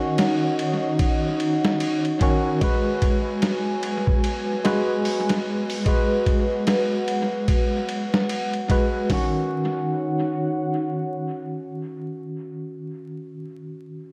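An echo-heavy, lightly reverberant mix with a haze of vinyl crackle frames this dark, melancholic trip hop excerpt at 74 BPM in Eb minor, its swung sixteenths moving from Ebm7 to Abm7 at 2.6 seconds. A gritty, pitched-down boom bap sampler-style kit with a thumpy kick, medium-tuned snare, hi-hat and ride sits up front with dub echo from 0.2 to 9.3 seconds, beside a bright, barky tine electric piano whose harmonic tremolo and tape echo carry the accompaniment. Around them, a deep sawtooth analog pad with a sub octave holds slow-attack chords through chorus and phaser, while a faint, flickering granular texture shimmers on a single high note.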